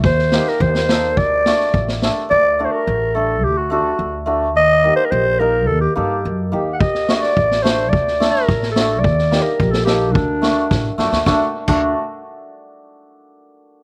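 Klezmer in D phrygian dominant at 107 BPM, soulful and festive, with a raspy, growling clarinet singing up front with vibrato and scooped notes in a jazz style over shimmering hammered dulcimer, woody pizzicato upright bass and a street-band drum kit with a boomy kick that drops out at 2.2 seconds, returns at 6.8 seconds and plays a fill at 10.7 seconds, all in a dry outdoor sound with slapback echo on the clarinet and dulcimer.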